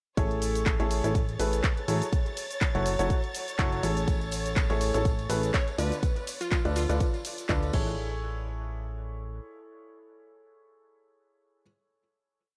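Feel-good, euphoric piano house at 123 BPM in A major, with a swung 16th groove and an echo-heavy mix that opens straight into the drop. A bright baby grand plays an up-front rhythmic chord riff with sidechain pumping and dub echo over Amaj7, F#m7 and Dm6 chords, backed by rich, vibrato-laden violin section chords, a plucky analog bass and a punchy, tape-warm four-on-the-floor kick with dry programmed hats, shaker, ride, claps and crash. A distant tambourine joins at 4.1 seconds, a glassy, crystalline wavetable pluck melody with chorus and dub echo enters at 5.5 seconds, and the piano and bass carry on past the final hit at 8.0 seconds, with the piano outlasting the bass.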